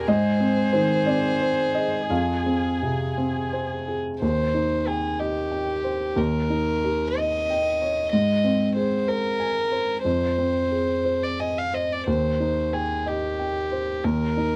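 In a rubato 6/8 at 55-65 BPM counted in dotted quarters, this tender, hopeful neoclassical piece in Eb major, cut from a longer work, sets a single floating, pure sul tasto violin melody up front over a soft, mellow felt-muted upright piano with audible action noise, while a rich viola adds airy-bowed, lightly vibrato support until 3.7 s, captured in a dry, close 1970s-style studio sound with light reverb and moving through Ab, Fm, Eb6 and Eb7 harmonies.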